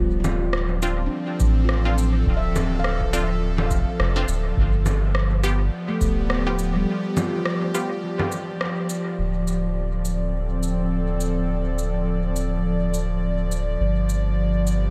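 A swung sixteenth-note groove in 4/4 gives this meditative ambient dub excerpt its gentle, unhurried sway, carried by electronic congas, cabasa and rim click that sound re-recorded in a large room and trail off into dub echo. A soft, round sub bass with a mellow tube-saturated tone sits up front alongside an airy, breathy pad whose detuned, chorused chords drift between Dm7 and G7. A ringing handpan of nitrided steel, played with the fingertips, spins arpeggios through a gritty vintage 12-bit sampler and tape echo until it falls away at 8.7 seconds. A muted, filtered chord stab with a plucky, bright edge adds chorused dub-echo accents, while an analog electronic kick enters at 1.4 seconds and stays deep in the background. A break opens at 6.9 seconds, marked by a band accent just before the second section begins, all set in light digital ambience that keeps the mood deep and contemplative.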